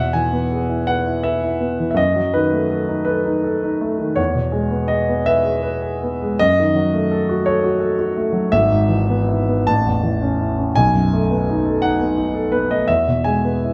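Classical romantic character piece for solo piano, passionate and hopeful in mood, unfolding in 6/8 with generous rubato. A warm, polished grand piano sits present and up front, spanning G#1 to A5 as it alternates between the home chord and a diminished colour before moving through A and B7 to settle back home at 12.9 seconds. A wet stone-room reverb adds a resonant glow to this excerpt from a longer work.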